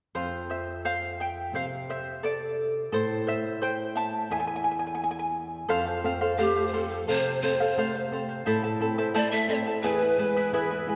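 Melancholic yet festive, this Andean folk fragment in 2/4 opens with a shimmering, fingerpicked charango out front, its double strings ringing over a dark, fingerpicked flamenco guitar that holds down the low end throughout. At 6.4 seconds a breathy bamboo pan flute takes the melody, mellow and slightly unsteady with vibrato, a soft chiffy attack and a distant quality. The ensemble sits in the long, wet reverb of a church or concert hall, with harmony moving between F, A minor and E.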